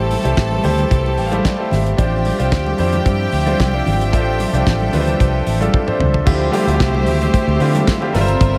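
A small-room ambience frames this sultry, danceable disco excerpt in D minor at 112 BPM, moving from Am7 to Dm11 as the damped 70s drum kit with its fat snare and tight kick sits up front beside a dark, round, foam-muted fingered electric bass. A clear concert grand piano with deep bass, audible action noise and long sustain carries the accompaniment and plays a fill from 0.9 to 2.0 seconds, while an earthy string section with light vibrato takes a second line over a lush, focused string section holding sustained chords in the background. Ringing, band-limited congas with hard hands sit low in the mix, and a drum fill from 5.7 to 6.3 seconds leads into a new section.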